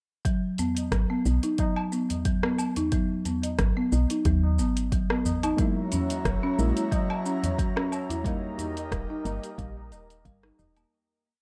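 A dry, rustic folk marimba played with medium mallets opens at 0.2 s alongside a soft, deep electronic kick, the marimba running a 16-step arpeggiated sequence touched with tape echo in this mystical, organic downtempo piece at 90 BPM in G# minor. A layered deep house kit of closed hat, shaker, low woodblock and rim click, overdriven like the kick and re-recorded in a small room, settles into a gently swung groove, while high-tuned, short-ringing tabla adds hand-drum color. A round, woody FM bass sits up front with a dark, dub-style line over a G#m7 chord. At 5.6 s the harmony moves to F#7, and a mellow chord stab with rootless voicing, held chords with syncopated pushes, analog chorus, cassette-tape grit and sidechain pumping arrives with an airy, breathy pad built on detuned tones and a noise layer. The whole piece sits in light reverb, and a fade-out beginning at 7.4 s carries it to a closing D# chord.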